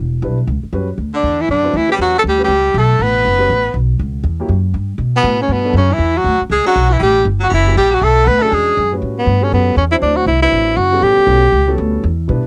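An upright bass opens this relaxed small-group swing and bop excerpt, plucked and woody with steel strings and set up front, at a brisk 239 BPM in 4/4 with swung eighths. A concert grand piano joins almost at once as accompaniment, warm with a deep bass register. The breathy tenor saxophone carries the melody from 1.2 seconds, soft in attack, scooping into notes with vibrato and sitting close to the listener. Alongside it, an edgy, punchy baritone saxophone plays a forceful second line with its own scoops and vibrato until 8.9 seconds. The piano and both horns carry a cassette-tape character, and the whole home recording sits in light reverb, with harmony in A mixolydian moving through colours such as A13, D13 and E13 before returning to A13.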